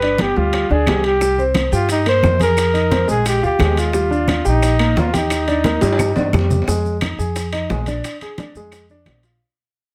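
Sophisticated and danceable, this excerpt of up-tempo Afro-Cuban jazz at 176 BPM in Eb major features a punchy, close-miked flugelhorn with vibrato and slapback echo leading the melody until 6.3 seconds. Beneath it sit a warm grand piano accompaniment and woody pizzicato upright bass up front. Thick-skinned congas and round low-tuned bongos sit in the background alongside ringing distant timbales, dry claves and grainy maracas, all in light reverb, and a drum fill at 5.8 seconds gives way to a fade-out from 6.7 seconds.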